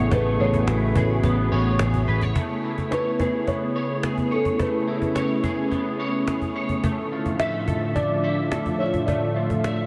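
A warbly, tape-like pad sits up front in this ethereal, floating dream pop excerpt, holding sustained chords with a detuned, nostalgic sawtooth glow, chorus and its own built-in reverb. Over it, a felt-muted upright piano carries the melody in a soft, boxy, intimate voice with audible action noise, dressed in lush chorus and analog delay, while an electric guitar at the edge of break-up plays twangy, fingered arpeggios through ensemble chorus and analog delay. A round, foam-muted picked electric bass sits dark and amped at the front until 2.3 seconds, and a very quiet glassy texture of drifting sine overtones hovers until 2.6 seconds. A woody cajon with faint snares keeps a straight 4/4 at 107 BPM in A major, and the whole mix is soaked in a huge ambient reverb with a 7.4-second tail. The harmony rests on Amaj9 before moving to Dmadd9/A at 6.8 seconds.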